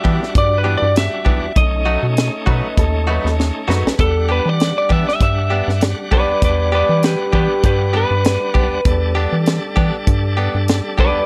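Brooding and soulful, this straight-eighth soul blues cut from a longer piece rides a tight funk drum kit with a high-tuned snare and a rubbery square-wave bass, while a shouting tonewheel organ with key click and slow rotary speaker fills in alongside twangy, direct-recorded clean guitar stabs. A slightly broken-up lead guitar carries the melody up front, and a lo-fi second guitar with analog delay sits in the background from 2.5 to 4.0 seconds. After a drum fill, the lead guitar launches into a solo at 4.0 seconds over a small, natural room sound.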